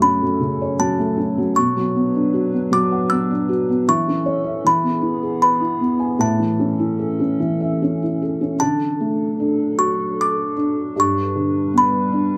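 In a rubato 3/4 at 77 BPM, this gentle, tender lullaby in A major drifts through F#m, Bm and E before settling on A, then turns toward D and G from 8.6 seconds. A delicate, tinkling music box carries the melody high and up front, over a soft, felt-muted upright piano whose dark, boxy, intimate tone fills out the accompaniment. Behind them, a warbly, nostalgic, lo-fi pad holds slow-attack chords with chorus and its own reverb, all set in a small room; the passage is cut from a longer piece.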